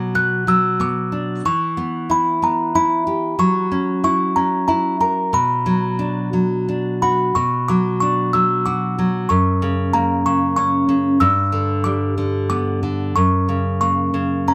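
In a rubato triple metre, this wistful, dreamy children's lullaby pairs a delicate, tinkling music box carrying the high melody, with its boxy small-room character, against a bright, up-front fingerpicked nylon-string guitar that supplies deep classical accompaniment, both sounding throughout this short cut from a longer piece under a moderate studio reverb as the harmony drifts from Bm through Em and F#7 before settling on G and F#.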